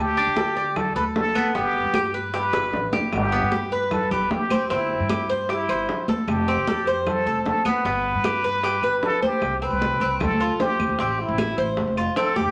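Bathed in a lush large-studio reverb, this relaxed, danceable cut from a longer Cuban son and guajira piece puts a clear, plunger-muted trumpet up front, playing a jazzy wah-wah solo with light vibrato beside the bright, metallic picked arpeggios of a double-strung Cuban tres, while a dark pizzicato upright bass with steel strings anchors the low end, ringing high-tuned congas played with hard hands enter at 0.2 s, tight bongos sit in the background, very quiet woody claves sound close and dry from 0.8 s, and a drum fill at 2.5 s comes well before the music moves into a new section at 9.4 s.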